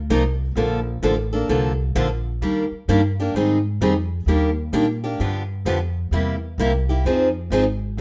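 A bright, picked steel-string acoustic guitar with fresh strings carries the accompaniment up front from 0.1 seconds, just after a woody, thumpy upright bass plucked on gut strings opens this lively, swinging jazz manouche excerpt, set in light reverb as it moves through chords from Ebmaj7 to G7, C7 and Fm7.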